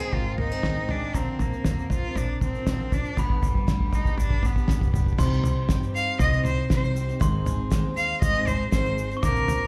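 A straight 4/4 pulse at 119 BPM drives this bittersweet, yearning indie folk piece in C minor, cut from a longer performance heard through a club's PA. It begins with a drum fill on a cloth-damped, thuddy kit with a fat snare and dark cymbals, building over the first 5.2 seconds while a boxy fingerpicked archtop guitar drops out at 1.2 seconds and a grainy tube shaker and a mellow, bell-like glockenspiel played with rubber mallets slip in behind. Up front, a bowed cello sings the rich, vibrato-laden melody over a picked dreadnought steel-string guitar with audible finger squeak and a woody, thumpy pizzicato upright bass, the cello and glockenspiel trailing plate reverb and tape echo as the chords move from Ab through Bbadd9 and G to Cm.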